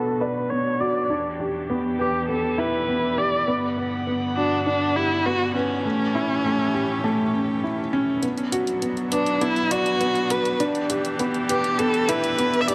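A nasal, focused solo viola carries the melody up front in this moving, hypnotic piano and strings electronica, its bowed line colored by vibrato and a shimmer reverb. Beneath it, a dark string quartet holds soft-attack sustained chords, one player per line, played sul tasto with a smooth top. A worn, woody upright piano repeats a riff close to the listener; it is slightly detuned, its action noise is audible, and it carries a digital delay along with its shimmer reverb. A filter sweep runs through the opening 8.2 seconds as the harmony moves from B minor through E minor seventh, G major seventh and A seventh. At 8.2 seconds a build-up begins: a deep, round sine sub bass enters, barely audible, and an overdriven, layered electronic hi-hat joins with a high-pass filter. The mix sits in a moderate scoring stage reverb under a low-pass filter, and this fragment is cut from a longer piece.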